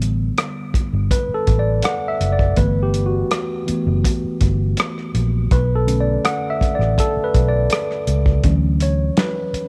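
A close, intimate studio sound frames this short cut from a lush, 1970s-style soul piece at 82 BPM in straight 4/4, tuned to A4 = 438 Hz, with a smooth, romantic mood. A worn, mellow tine electric piano, clean and slightly out of tune, plays a solo across the whole passage over chords moving from A7sus4 to G6, Bm7 and Dmaj7, while a dark, round, foam-muted fingered electric bass sits up front beneath it. The warm, acoustic soul drum kit, heard in a small room, works hi-hat, kick, rim click and snare, with a punchy kick, a medium-tuned snare and a rolled-off top.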